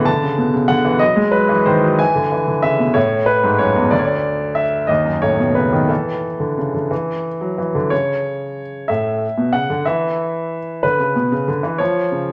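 Swaying in 6/8 at about 61 dotted-quarter beats per minute, the beats stretch and give with a free rubato that keeps the pulse pleasantly uneven. This graceful, elegant classical-period sonatina fragment in A major, cut from a longer piece, features a solo grand piano spanning D2 to A5, heard intimately and up front with a clear, natural tone, long sustain and audible action noise. The harmony moves through chords such as Bm7, E7, F#m/A and B7/D#, with a brief unharmonized moment near 3.9 seconds before settling on A/E and Dadd9. At 7.9 seconds a new section begins on A/C#, passing through an open E5 and closing on C#. A wet stone-room reverb with a 1.4-second decay surrounds the instrument, lending the intimate sound a resonant sense of space.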